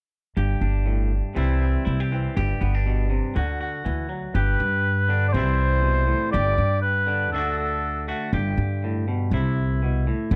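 A gently swung sixteenth-note groove at 121 BPM in 4/4 drives this sunny highlife guitar band excerpt in G major, with a bright, twangy clean electric guitar picking accompaniment through spring reverb and a woody, growly pizzicato upright bass sitting up front from 0.4 s. At 4.3 s a mellow oboe enters with a short classical-style solo melody, colored by light vibrato, and it steps away at 8.0 s while guitar and bass carry on over simple G, C and D changes. The dry, close 1970s-style studio sound keeps every part intimate and present.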